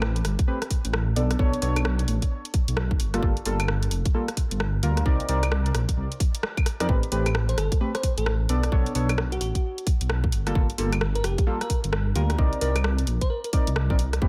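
A dark, rumbling detuned saw bass sits up front from the very start, its sustained low end pumping with sidechain as it moves between F1 and F2. This is a skippy, bouncy two-step UK garage cut with swung sixteenths, driven by a tight electronic kick that arrives at 0.4 s and a layered garage kit of claves, rim clicks and bright hi-hats. Deep, mellow chord stabs enter at 0.5 s, colored by chorus, cassette tape and a diffuse ambient delay as the harmony cycles through Am9, Bm9, Gm9 and Cm9. At 7.5 s a bell-like FM electric piano adds a sparkling, warbling vintage melody, also dressed in chorus and delay. Light reverb and digital ambience frame the mix of this passage, which is cut from a longer piece.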